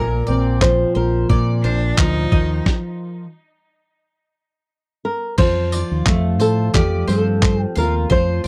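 A dry, close 1970s-style studio sound frames this carefree, heartfelt acoustic pop excerpt, where a dark, classical fingerpicked nylon-string guitar carries the melody over a full-bodied, double-tracked steel-string acoustic guitar, bright bowl-back mandolin arpeggios and a round, punchy fingered electric bass, while a gritty, compressed sampler-style soul drum kit with thumpy kick, handclaps and tambourine enters at 0.6 s, a nasal, boxy bowed cello with vibrato and tape echo adds a brief second line at 1.6 s, and after a stop the music moves into a new section at 5.4 s.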